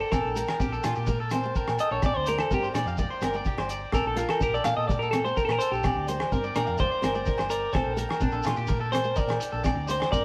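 Joyful and danceable, this highlife guitar band excerpt moves at 126 BPM in a straight 4/4, with a clean, picked electric guitar up front soloing over a repeating cycle between Gmadd9/Bb and Bb6. Beneath it, a twangy, slightly broken-up electric guitar with spring reverb plays arpeggios, a round hollow-body bass holds the low end, and a fingerpicked flamenco guitar and a reedy tonewheel organ on slow rotary speaker sit in the background. A dry, cloth-damped drum kit with tight kick and rim click drives the groove alongside ringing agogo bells and a grainy shekere, all captured as a band playing live in a stone room with moderate reverb.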